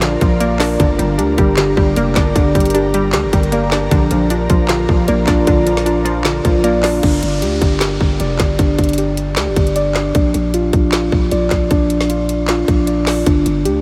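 A dreamy, reverb-soaked mix opens this eerie, brooding trap excerpt, cut from a longer piece and moving with a half-time feel. Muted, felt-like synth keys play dark, intimate arpeggios throughout, their chorus and analog delay drifting into a huge ambient space. A growling, buzzy 808-style bass sits up front beside an electronic trap kit with a hard-clipped kick, woody snare, metallic hi-hats, handclaps and crash cymbal. For the first 7.0 seconds, a hollow, bouncy square pluck and an ethereal, airy pad with slow attack and long release float in the background over Bb and G minor chords. After that the pluck and pad fall away, and a downlifter plays quietly behind the beat from 7.0 to 10.1 seconds as the harmony moves between G5 and Bb.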